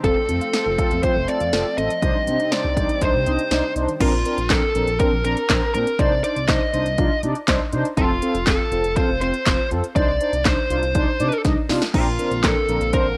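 A distorted fuzz lead guitar, picked and up front, opens this nocturnal, driving synth-pop excerpt at once, carrying the melody over a punchy deep house drum kit of kick, snare, handclaps, smooth hi-hat and crash cymbal. Beneath it, a mellow synth brass plays a round, warbling accompaniment with chorus and vibrato, while a smooth gliding synth bass holds down the low end with dark, sustained portamento lines. For the first 4.0 seconds a bright, evolving resonant pad sits in the background and a very quiet, soft pluck adds gentle arpeggios before both drop away. The pad returns at 11.9 seconds, just after a short drum fill, as the chords settle back onto Bbadd9 from a cycle of F, Cmadd9 and Bbadd9. The sound is dry and gritty, with a cassette-tape hardware character that gives the whole cut a vintage, after-dark edge.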